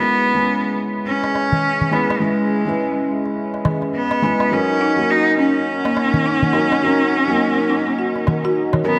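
A rich, focused bowed cello with vibrato carries the melody up front over a soft, felt-muted upright piano with audible action noise and a smooth, detuned analog pad with chorus in the background, joined at 1.2 s by a crisp, close metal-shell darbuka played with soft hands and at 4.8 s by woody, airy marimba arpeggios with delay, in a meditative, earthy organic downtempo excerpt at 104 BPM in C# dorian, moving from C#m7 to D#m7 with a lightly swung sixteenth feel, bright 1980s-style digital production and a lush hall reverb.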